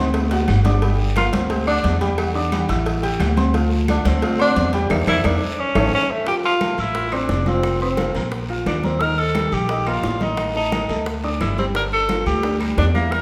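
Wet recital-hall reverb surrounds this driving, sultry Afro-Cuban jazz at 175 BPM in D minor, where a bright, steel-strung pizzicato upright bass and an intimate upright piano with audible action noise carry the harmony from D7 through Gm and A7sus4. A mellow tenor saxophone enters up front at 1.2 s with subtone and scooped notes, soloing through the first half, while a drum fill and a band accent lead into the new section at 6.3 s. Behind them sit damped, thick-skinned congas, tight high-tuned cowbell and bongos, ringing metal-shell timbales and agogo bells, a raspy guiro and very quiet woody claves.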